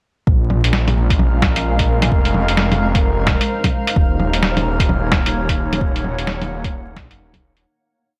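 A muffled, crackling lo-fi haze hangs over this short, nocturnal and melancholic future garage piece, where an overdriven two-step kick and a compressed, tape-warm sampler kit of closed hi-hat, low bongo and snare skitter in a shuffled beat alongside a menacing detuned saw bass line that pumps with the sidechain, while a blurred granular pad drifts through slowly shifting minor seventh chords and a glassy held high note shimmers in the background before everything fades out from 5.2 seconds.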